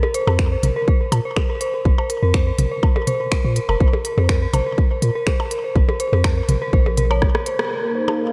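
Minimal techno with a quirky, cool mood, this short excerpt cut from a longer piece rides a swung 4/4 groove. An eerie, inharmonic FM synth bell carries the riff up front from the start, its detuned, decaying tone shaded by chorus, delay and a low-pass filter while sidechain pumping makes it breathe against the beat. Tape-tinged electronic percussion blips and toms scatter through delay beneath it, and a house drum kit adds finger snaps, crisp filtered hats and rim clicks. A deep, sine-based sub bass with a pitch-drop attack and a punchy electronic kick sit firmly forward, the bass also pumping under the sidechain. A drum fill from 7.2 to 7.7 seconds and a band accent at 7.6 seconds close the section, after which a soft, breathy pad with a noise layer and moving notch drifts in on chorus, all set in a light reverb.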